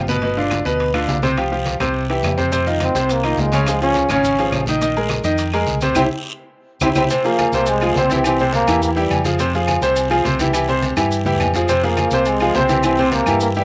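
Passionate and fiery, this excerpt of brisk salsa at 209 BPM features a clear, punchy trombone with light vibrato carrying the melody, set against a bright, brilliant grand piano with short sustain up front, a dark, round fingered electric bass, and a bed of percussion: background congas, ringing timbales and agogo bells, and woody claves, a raspy guiro close and dry, and grainy maracas joining at 2.5 seconds, all heard through a small room and cassette tape, with a band accent and drum fill around 6.0 seconds moving from G7, Csus4 and Fm7 toward a Bb7sus4 that resolves to C.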